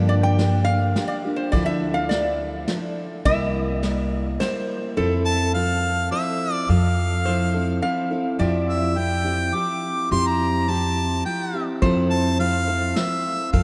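A vast, echoing cathedral reverb surrounds this gentle, hopeful acoustic folk piece in F major, a short cut from a longer work in 3/4 at 105 BPM, where a picked steel-string guitar with audible finger squeak sits up front over woody, dark pizzicato upright bass, a nasal, metallic resonator slide guitar plays the second line and takes a solo with the steel bar through the opening 5.0 seconds, soft brushed drums play distant and roomy until 4.5 seconds and return at 11.8 seconds, and a harmonica with light vibrato and a smooth top carries the melody from 5.3 seconds over chords moving from Gm7 through C7 to Fmaj7.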